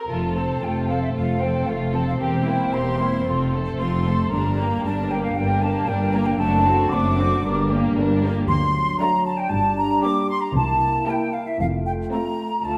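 A quick, straight 4/4 pulse at 115 BPM drives this stormy, dramatic classical-period passage in F major, cut from a longer orchestral movement. Airy, close-miked flutes sit up front on a second line above veiled, con sordino strings: muted violins carry a distant melody and a second line, violas fill in lush accompaniment, and cellos and double basses supply a dark bass, while a tight French horn section holds sustained chords. The harmony turns from F through G minor and D7 back to F, with very quiet, dry timpani striking C3 briefly at 10.6 seconds, all set in a reverberant scoring-stage space.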